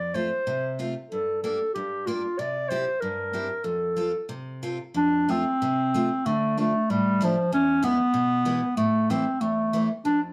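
Bouncy and festive, this short alpine folk excerpt moves in a loose, rubato two-beat feel, with a mellow clarinet carrying the melody in a classical style, its soft attack set up front yet sounding distant and roomy. Beneath it, a picked steel-string acoustic guitar provides accompaniment with a bright tone of fresh strings. The dark studio mix adds a wet reverb as the harmony moves from F through Gm and C7, then later turns to Dm, E and Am across two matching phrases.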